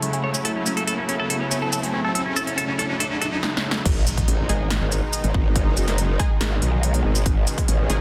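Dense, heavily limited and lightly reverberant, this aggressive, menacing half-time wobble dubstep fragment builds from a clean, bright semi-hollow electric guitar melody with phaser and tape echo over a lush, sidechain-pumping supersaw pad, big-room dance drums with a punchy snare and crisp hats, and an electronic riser, until the drop and impact at 3.9 s unleash a growling, overdriven wobble bass with chorus and a tape-warmed electronic kick, joined at 4.5 s by a bold, detuned orchestra-hit-like synth stab carrying its own reverb and tape echo.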